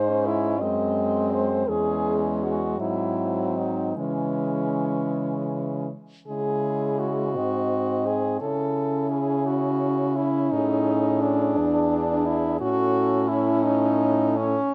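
An up-front, clear French horn carries the second line of this lyrical, yearning classical passage for horn quartet in C# minor, while a more distant horn with light vibrato sings the melody above it, reaching up to D#5. Beneath them, a warm, present horn with soft attack and vibrato fills in the accompaniment, and a roomy, far-off horn anchors the bass from E2. In a slow, rubato 6/8 of around 51-59 BPM, the melancholic phrase is stated twice, the second time from 6.3 s, moving between G#7 and C#m before turning toward Amaj7, E7 and A under light reverb and close, detailed miking.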